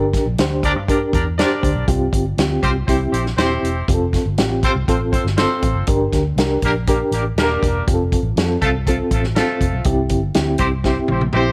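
A straight, danceable 4/4 groove drives this short, uplifting slice of 1960s-style soul, with a punchy, up-front acoustic drum kit on hi-hat, kick, snare and toms in a small room, and a round, dark, foam-muted fingered electric bass underneath. A mellow, reedy electric piano with fast tremolo carries the accompaniment through a Gm, Csus4, C and F progression. From 0.6 seconds a tight, clear horn section with light vibrato and octave doubling adds a second line, before a drum fill at 10.8 seconds closes the passage.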